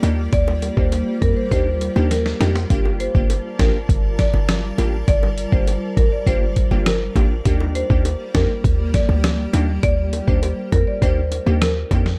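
A dark, digital-ambience production opens this hypnotic, sultry dancehall excerpt at 101 BPM, where a gritty, up-front sampler-style drum kit with a thumpy kick and a drum fill at 2.1 seconds plays alongside a punchy, tight 808-style bass, while crisp, detuned wavetable chord stabs and a cloudy, evolving granular pad with built-in reverb shade the Ebmaj7 and Gm7 chords, a woody marimba melody with digital delay enters at 0.3 seconds, and tight, high-tuned bongos sit in the background.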